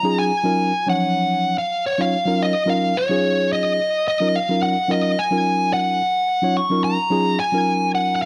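A dark production soaked in a moderate echo-chamber reverb frames this slick, intense jazz fragment, cut from a longer piece, with a light swing in 4/4. Up front, a smooth, overdriven, picked electric lead guitar carries the melody in a high register, while a worn, slightly out-of-tune tine electric piano, clean and heard through its built-in speakers, supplies the accompaniment beneath it. Both parts sound together from the start until about 8.3 seconds.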